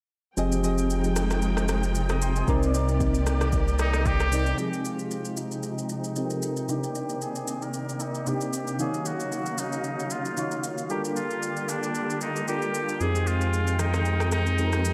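Amapiano at 114 BPM in F dorian, this hypnotic, late-night excerpt from a longer piece rides a swung sixteenth-note feel under a dreamy hall reverb. Soft, round electric-piano-like synth keys carry the chords with chorus and phaser, while a lush symphonic string section sustains bowed harmonies with vibrato and portamento. A deep, sine-toned sub bass sits up front, drops out at 4.5 seconds and returns at 13.0 seconds, as a deep house kit of deep kick, rim click and shaker, overdriven as a whole, keeps time throughout. From 3.8 seconds a muted trumpet takes the solo melody, its nasal, brilliant tone colored by scooped notes, vibrato and a diffuse ambient delay. A filter sweep runs through the second section from 4.6 seconds as the harmony moves from Fm9 and Cm9 through Ebm9 and Gm9 before settling back on Fm9.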